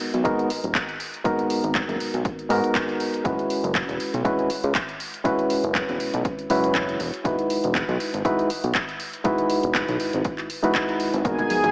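A lightly swung 4/4 nu-disco groove of punchy electronic kick, handclaps and tape-warm hi-hats drives this sleek, sensual fragment of a longer piece, where an up-front reedy electric piano breathes with sidechain pumping and analog delay over G#m7, F#9sus4 and Emaj7 while a fat, detuned analog bass with filter sweeps pumps beneath, a bright chorused unison pad arrives at 11.2 seconds and ringing congas and bongos slip in at 11.4 seconds, set in a dreamy, reverb-soaked mix with a small-speaker sound.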